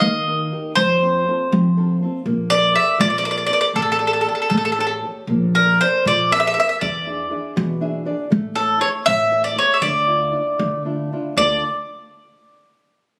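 Captured on a phone in a recital hall, the recording has a moderate reverb and a studio ambience around this wistful, passionate Italian folk serenade cut from a longer piece. It moves in 6/8 with a free, rubato feel. An up-front mandolin carries the melody with a round, picked, double-string tone, while a thumb-plucked flamenco guitar accompanies it softly underneath, and a brief nylon-string guitar fill arrives at 7.6 s. A woody, thumpy upright bass with gut strings supplies pizzicato support, and all three parts play together through to 11.6 s. The harmony drifts through colours such as Bbmaj7, A7sus4 and E7 before settling on a warm Dmadd9 and a closing D minor.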